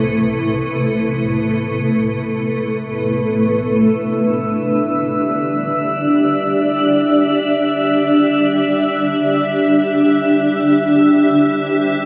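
Free-time, weightless ambient excerpt in C major, tuned to A4 = 441 Hz, in which an up-front granular cloud pad holds blurred, detuned, full-bodied sustained chords that move from Am/C to Cadd9, while a very quiet, mellow, thumb-plucked concert harp rings out arpeggios until 3.3 s and a calm, glassy chorused texture of drifting overtones enters at 3.9 s as the synth texture fades out, all steeped in a huge reverb with a 7.3 s decay and a cassette-tape sound.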